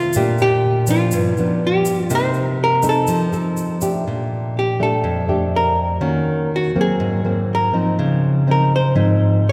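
Bathed in a wet cathedral reverb from a church or concert hall, this brief, romantic and relaxed bossa nova clip in Bb major at 122 BPM sets a dark, clean, picked archtop guitar melody over a thumb-plucked classical nylon-string guitar accompaniment, with a grainy, close egg shaker playing until 4.1 seconds, when the hollow-body guitar takes a solo through to the end at 9.5 seconds.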